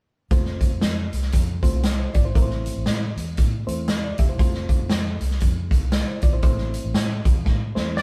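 Joyful and uplifting, this short cut from a longer piece is an uptempo 1960s-style soul groove at 118 BPM in 4/4, with a swung eighth-note feel in F major. A swinging big-band drum kit sits up front with a punchy kick, a medium-tuned snare and hi-hat, sounding natural in a big room, while a vintage fingered electric bass, foam-muted, dark and round, holds the low end. A bright reed electric piano supplies the accompaniment, its reedy, worn tone slightly out of tune and lightly overdriven through built-in speakers. The chords move between F and Am, and a drum fill at 7.5 seconds leads to the entrance of a tonewheel organ at 8.0 seconds, which carries the melody with key click, chorus vibrato and a fast rotary speaker. The band sounds as if it is playing live together in one room, with a light reverb.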